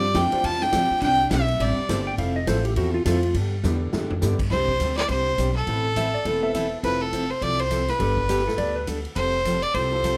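A clear, biting fiddle opens this cheerful western swing excerpt at a brisk 206 BPM, sitting up front with light vibrato and an airy, nasal bow tone, while a dark hollow-body jazz guitar adds a second line in the background. Underneath, a full-bodied dreadnought acoustic guitar picks out the changes in C major, and a woody, thumpy pizzicato upright bass anchors the low end throughout. A swinging big-band drum kit with a punchy kick and medium-tuned snare joins almost at once, along with a brilliant, short-sustained upright piano tucked into the background. At 2.1 seconds the fiddle drops out and a clean, dark lap steel slides in with its own line, before a drum fill around 3.6 seconds sets up the fiddle's return at 4.5 seconds. The lap steel comes back in the second half, moving over chords like Fmaj7, Amadd9 and Gadd9, all set in a moderate studio room.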